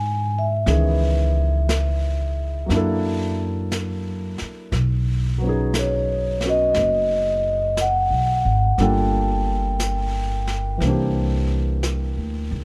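Soft-mallet vibraphone, mellow and ringing with its motor off, opens this smoky, intimate jazz ballad excerpt at a slow, swung 59 BPM over a natural-sounding grand piano with deep lows and a woody, up-front pizzicato upright bass, with brushed drums joining at 0.7 seconds and the vibraphone melody stopping at 10.8 seconds as the close, dry recording moves from F#m11 through F#7alt and B69 to Gm7 and C9.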